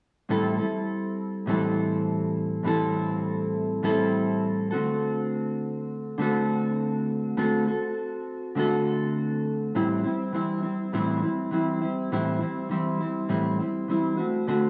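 A dark, clean, fingered electric guitar plays alone and up front from 0.3 to 14.7 seconds in this lonely, mellow indie pop excerpt at 102 BPM with a light sixteenth-note swing in A dorian, tuned slightly flat to A4 = 437 Hz, its lush chorus, warbly pitch drift and analog delay sitting in a moderate spring reverb and studio ambience as it moves between Am7 and D7, with a new section beginning at 9.7 seconds.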